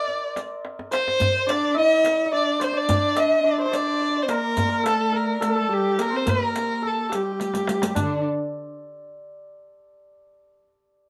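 This excerpt of a Persian modal ensemble opens with a dark, woody violin carrying the melody up front, its bowed line colored by vibrato and a slightly distant quality, alongside a hammered santur whose shimmering, ringing tone traces a second line. A deep tombak played with hard hands joins almost at once, followed at 0.4 seconds by a riq with dark jingles that sounds close and dry, and a short drum fill marks the opening moments. At 1.5 seconds a single bowed cello enters as another second line, expressive and smooth at the top, sliding between notes with portamento and vibrato. The music moves at 71 BPM in a straight 6/8 with a longing, hypnotic mood, and another drum fill arrives just before the passage changes at 8.0 seconds. A moderate studio reverb gives the ensemble a modest sense of space, and the santur rings on briefly after the other parts stop near 8.2 seconds.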